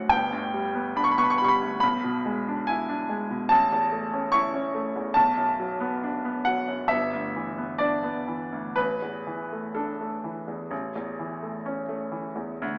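Romantic classical nocturne for solo piano, tender and dreamy in a rubato 4/4, where a clear, up-front baby grand with short sustain drifts through chord changes over roughly 12.8 seconds, from a deep G1 up to C#6, set in a wet recital-hall reverb yet heard through a small-speaker sound, cut from a longer piece.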